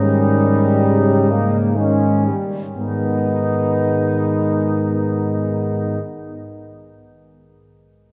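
A mellow, up-front tuba holds a low G# beneath this solemn, elegiac classical hymn for brass band in G# minor and 3/4, moving at a rubato 58-72 BPM and slowing through the first 2.8 seconds, while a clear, close-miked trumpet section carries the melody with light vibrato, a soft-toned, distant French horn section sings a second line, and a roomy euphonium and a warm trombone in the background add vibrato-tinged accompaniment, all bathed in a long, wet church reverb as the harmony moves from D#7 over G# to G# minor at 2.8 seconds.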